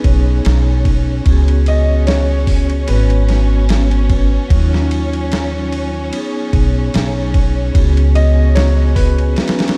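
Trip hop with a hypnotic, dark mood and a swung 4/4 feel, this short cut from a longer piece sets a muted, intimate felt-dampened upright piano melody with tape echo over ringing, metallic vibraphone accompaniment carrying tremolo and tape echo, lush bowed studio strings holding a sustained tone, a woody pizzicato upright bass up front until 9.3 seconds, and a gritty, overdriven sampler-style drum kit with a thumpy kick, snare, hi-hat and ride, all moving through B69, Db7sus4, Abm7 and Ebm9 in a light studio reverb.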